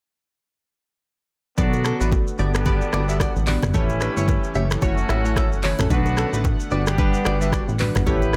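At 1.6 s a smooth, mellow afrobeats groove in B minor at 111 BPM, swung on the sixteenths, opens with an up-front deep house drum kit of deep kick, finger snaps, handclaps, hi-hat, rim click, shaker and toms beside a punchy, funky analog bass with a filter pluck, while very quiet congas and bongos, glassy chorused digital keys, a thick, warbling detuned pad and a clear vintage horn section with light vibrato carry a Bm7–Gmaj7–A7–F#m7 progression, and at 1.9 s a bright, twangy clean electric guitar riff joins, compressed and dressed in lush chorus and tape echo, in a mix with little reverb cut from a longer piece.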